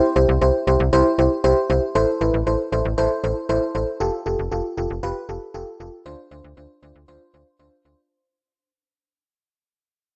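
Synth-pop at 117 BPM in 4/4, this upbeat yet wistful clip from a longer piece fades out across its 8 seconds while moving through C, Am, Fadd9 and Dm7. An FM electric piano with a soft pad layer opens the clip at 0.0 seconds, lush and dreamy with a warbling chorus, and a snappy, slap-like FM bass with a metallic attack joins at 0.2 seconds. Both parts sit up front in a gritty hardware recording touched by light reverb and digital ambience.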